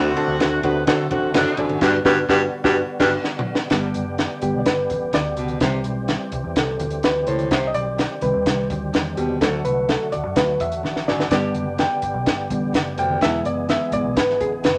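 A reedy, worn electric piano, slightly out of tune and heard through its built-in speakers, takes a solo from 3.7 s in this joyful, danceable 1960s-style soul excerpt cut from a longer piece. Before that, a tight horn section with light vibrato plays a second line until 3.1 s and joins a band accent. Alongside it, a baritone saxophone with scooped notes and a smooth top carries a low riff, a lightly overdriven tonewheel organ with key click and chorus vibrato holds sustained chords, and a dark, round, foam-muted electric bass anchors the bottom, while a dry, compact drum kit with a punchy kick, high-tuned snare and dark cymbals sits up front with fills, and very quiet, bright congas add percussion in a moderate studio reverb.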